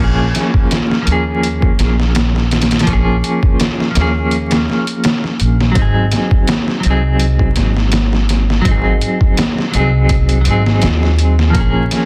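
A slow 4/4 groove at 83 BPM, lightly swung on the sixteenths, opens this cinematic, hypnotic trip hop fragment cut from a longer piece in Bb minor, tuned to A4 = 438 Hz. The sampler-style drum kit enters at 0.3 seconds, its pitched-down, muffled hi-hat, thumpy kick and medium-tuned snare compressed and overdriven, sitting up front in a small room ambience. Underneath, a pizzicato upright bass with woody steel strings holds the low register from the very start. A dark, clean electric guitar, picked and placed up front, carries the accompaniment through tremolo and tape echo, moving from Bbm7 to Ab7 at 5.8 seconds and back to Bbm7 at 11.5 seconds. The whole sound is dry, with little reverb, and arrives in a dense, heavily limited modern master dusted with vinyl crackle.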